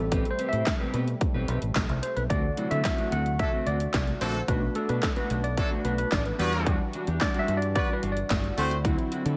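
A big-room dance kit with a punchy kick, huge gated-reverb snare, handclaps and hi-hat drives this danceable, late-night early-eighties boogie funk at 110 BPM in straight 4/4, with a fingered electric bass sitting up front, direct and amped. A clean tine electric piano takes the solo spotlight in E minor over chords moving from Am9 through D7, Bm7 and Em9 to D9, while a dark, picked clean electric guitar plays a riff through lush chorus and a brassy, detuned sawtooth pad holds soft-attack chords in the background with a filter swell and vibrato. At 3.4 s a clear horn section with octave doubling and light vibrato enters on a second line, all in a dry mix from a short cut of a longer piece.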